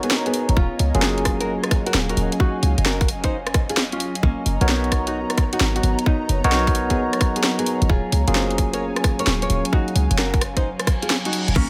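A swung two-step garage groove at 131 BPM drives this bouncy, moody clip from a longer UK garage piece, built on an overdriven electronic kick that enters at 0.6 s just after a punchy, tight 808-style bass arrives at 0.5 s, and a layered garage kit with hi-hat, rim click, crash and a cracking snare, both drum parts up front in studio reverb. A full-bodied, fingerpicked nylon-string guitar carries the melody with audible finger squeak and analog delay, while a barky tine electric piano, clean through a combo amp, adds gritty 12-bit stabs. In the background, an airy, breathy pad holds sustained chords moving between G#m11 and D#m11 while a deep, dark ambient pad adds texture, both pumping with sidechain, and a reverse cymbal rises at 10.8 s in an echo-heavy mix.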